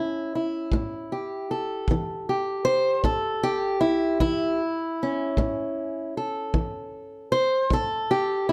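A fingerpicked acoustic archtop guitar opens this short acoustic country blues excerpt, sitting up front with a dark, woody tone and the dull character of old strings. It carries the melody over a single A7 chord in a straight 12/8 feel, and a plate reverb adds a gentle sheen around it. At 0.7 seconds a kick drum enters, sounding distant and roomy yet punchy, with a brushed touch that belongs to an acoustic studio room. The kick drops away at 7.9 seconds, just before the guitar finishes at 8.5 seconds. The mood is soulful and rollicking, with the spare duo setting framed by a light reverb.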